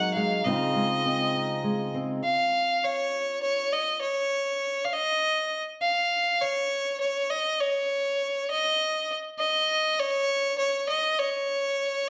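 A bowed fiddle and a fingerpicked steel-string acoustic guitar open this uplifting folk passage together, cut from a longer piece and moving at a gentle 67 BPM in a straight 6/8. The single fiddle carries the melody between Db5 and Gb5 with a rich, smooth tone, light vibrato and an even, smooth top, and a slapback echo trails its line. Beneath it, the guitar sounds bright and fresh-stringed with an auditorium body, settling on an Fm7/Db chord at 0.4 seconds and sitting a little lower in the mix than the fiddle. The guitar stops at 4.0 seconds, and from there the fiddle sings alone until 12.1 seconds. Both instruments are placed up front in a moderate large-studio reverb, which gives the passage a warm, open sense of space.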